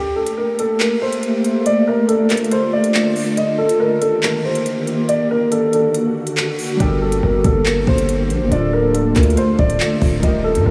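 Drill hip hop with an ominous half-time feel, opening on a dark, up-front grand piano melody over an ethereal, airy pad and an overdriven drum kit of knocking kick, crisp hi-hats and handclaps, until at 6.8 seconds a distorted, aggressive 808-style bass and warbling, nostalgic lo-fi synth keys in the background join, all in a dreamy mix soaked in huge reverb.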